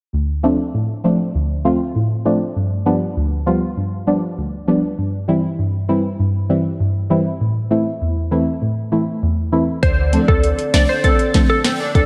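Sultry and tough, this dancehall excerpt in D minor at 99 BPM opens with a deep, mellow chord stab, soft and detuned with chorus, moving through Dm7, G7, C/G and Am alone until 9.8 seconds, when a glassy, crystalline wavetable pluck melody, fingerpicked nylon-string guitar arpeggios drifting in diffuse ambient delay, a clean, boomy 808-style bass and an afro-pop drum kit with a deep kick, sharp snare, metallic hats and vintage 12-bit sampler grit arrive together, all set in a dreamy mix soaked in lush hall reverb.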